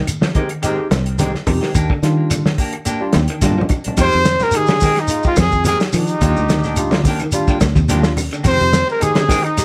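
Driving and intense, this afrobeat excerpt moves at 108 BPM in a straight 4/4, centered on F dorian and alternating between rootless Fm9 and Ebmaj7 chords. A dry, muffled soul drum kit sits up front with a tight kick and medium-tuned snare, surrounded by low-tuned, damped congas in the background, a grainy shekere and very quiet woody claves. A clean electric guitar picks arpeggios through harmonic tremolo while a hollow-body semi-hollow guitar adds stabs bathed in tape echo, and a bright, barky tine electric piano with overdrive and analog chorus supplies accompaniment, playing a fill from 2.9 to 4.0 seconds that a drum fill joins at 3.4 seconds. A round, foam-muted fingered bass enters at 0.9 seconds. At 4.0 seconds a breathy, close-miked trumpet takes the melody with soft attack and vibrato, shadowed by a very quiet, smooth-topped second trumpet, all set in light reverb.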